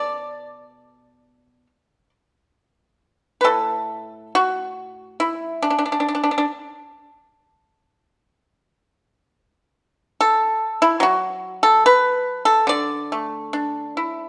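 This is a piece of Chinese traditional music for a single plucked string instrument, a serene and elegant fragment cut from a longer work. A solo pipa plays throughout the 14.3 seconds at a rubato 71 BPM in 4/4, its uneven beats giving the line a free, breathing feel in the D gong mode. Played with fingerpicks, the acoustic pipa sounds bright and percussive, sitting dry and up front while ranging from A2 to D5. A brief opening gives way at 2.6 s to a longer passage that carries the fragment to its close. The performance was captured live in a stone room whose moderate reverb lends a gentle sense of space around the close, bright instrument.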